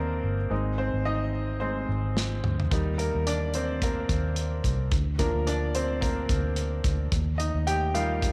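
A moderate spring reverb gives this short, anthemic slice of piano-driven pop a roomy glow, with a lightly swung sixteenth-note feel under its uplifting chords. A bright, woody upright piano sits up front and carries the lead, its action noise audible and intimate, while a dark, round, foam-muted electric bass supports it from the start. At 2.2 seconds a punchy studio drum kit of kick, snare, toms and hi-hat enters with a short fill, its rolled-off top keeping it mellow as the harmony moves between Eb, Ab and Bb/D.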